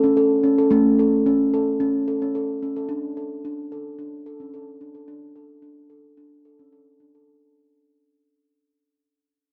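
World meditative music at 110 BPM in a straight 4/4, this short excerpt from a longer piece sets a hypnotic, meditative mood. A steel tongue drum plays arpeggios across the full 7.3 seconds, its round, pure, ringing tone struck with firm rubber mallets and placed up front, moving from an A chord to D5 at 2.9 seconds. A wet echo chamber reverb with a 2.1-second tail surrounds it in a dark production, and the whole passage fades out from the start.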